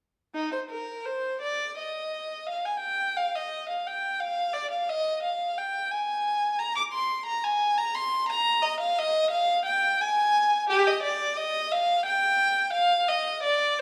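This classical, baroque-style suite movement for unaccompanied violin, cut from a longer piece, moves in a serene, radiant 3/4 at about 88 BPM in E-flat major with a free, rubato feel. A single bowed violin plays from 0.3 to 13.8 seconds, spanning Eb4 to D6 with a warm tone, soft attacks, expressive vibrato and gliding portamento. It sits up front yet carries a distant quality, surrounded by the moderate reverb of a recital hall.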